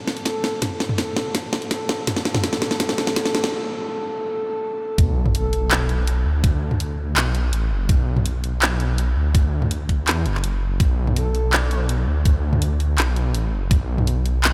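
Dark and tense, this half-time drum and bass excerpt moves at 165 BPM in B minor, with a short build-up giving way to a heavy drop at 5.0 seconds. A layered electronic kit sits up front with a cracking snare, handclaps, hi-hat and toms, running a fill through the opening before a brief break, while a knocking electronic kick, high-pass filtered and touched with studio reverb, drives underneath. A soft, breathy flute-like synth lead carries the melody between A4 and D5, its vibrato and chorus thickened by tape echo, and it returns briefly at 11.2 seconds. At the drop, a very quiet sub drop lands alongside a deep, rumbling detuned saw bass, saturated and beating, that holds the Bm chord from F#1 to E2. The whole mix is dreamy and soaked in a cathedral-like reverb, giving the hard-edged drums and murky low end a cavernous sense of space.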